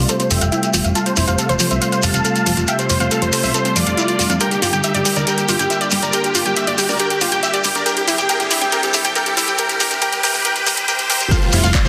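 In a straight 4/4 pulse, this euphoric, uplifting trance build-up from a longer piece sets a huge, airy supersaw melody up front, lush warbling pad chords, round vintage pluck arpeggios with chorus and delay, a funky analog bass, a house kit of metallic hats, claps and crash, a grainy shekere in the background and a very quiet riser, all pumping with sidechain where applied, while filter sweeps run over a Fadd9, Gm and Cadd9/G progression until a punchy electronic kick and impact land at 11.3 s in a recital-hall reverb and a dense, heavily limited master.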